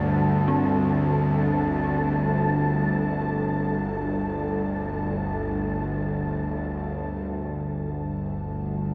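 Dark ambient drone in free time, cavernous and ominous and cut from a longer piece, built on a tense, string-like bowed drone sitting up front in the low register beneath a deep, moody analog pad holding a G5 chord, while an airy, wind-like tuned noise texture fades in and an eerie, warbling FM bell drifts in the background through chorus and tape echo until both stop at 7.3 seconds, the whole scene hanging in a vast cathedral reverb.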